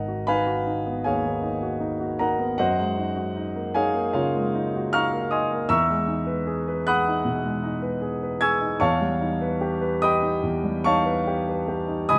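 A concert grand piano plays alone from the start, its warm, open tone, deep bass and long sustain sitting up front in a moderate recital-hall reverb. This mysterious, wistful impressionist piece moves at a rubato 76 BPM in 4/4 with uneven beats, ranging from G#1 to G#6. Its harmony drifts from G#m9 through F#69 and Emaj7 to an unsettled D#aug7/E at 8.8 seconds, in a 12.2-second passage cut from a longer piece.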